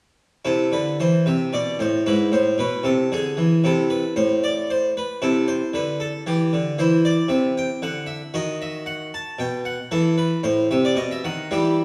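A close, up-front harpsichord sits inside the lingering reverb of a recital hall, its plucked, full Italian-style tone on two sets of strings ringing from G#2 up to A5. This grave yet flowing baroque-style suite movement in A minor moves in 3/4 at 114 BPM with a rubato feel, the solo harpsichord playing from 0.4 to 11.8 seconds. Its harmony passes from Am/C and E7/G# through a C69 chord, then turns toward a B/D# before settling on B.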